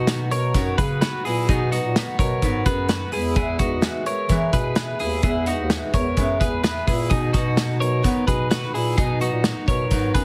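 A picked steel-string acoustic guitar with audible finger squeak, a bright, clean twelve-string electric guitar spinning slapback-echoed arpeggios and a mellow, jazz-style bass clarinet line with light vibrato and scooped notes open this breezy, youthful jangly indie pop fragment of a longer piece, while a loose indie drum kit with a punchy kick enters up front at 0.1 s in a pumping small room, the mix carrying a heavily compressed radio sound over a B to E and back to B progression.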